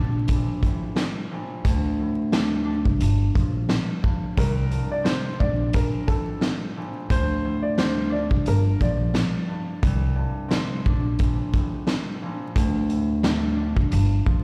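Up-front pizzicato upright bass, woody with steel strings, anchors this reflective, dark boom-bap hip-hop cut, moving between G1 and D2 at 88 BPM in 4/4 with a light swing on the sixteenths. A raw garage drum kit enters at 0.3 seconds, with a punchy kick, a medium-tuned snare and hi-hat, heard smooth and rolled-off on top in a bright stone room. Underneath, a fingerpicked concert harp rings softly, filtered at both ends, over chords cycling through Bbmaj7, D5, Gm7 and C5. From 4.4 to 9.8 seconds a dark upright piano carries a brief, mellow melody, intimate and slightly detuned with audible action noise, touched by a digital delay. The whole recording sits in a stone room with light reverb and vinyl crackle, as if played on a big sound system in a bare room, and it is cut from a longer piece.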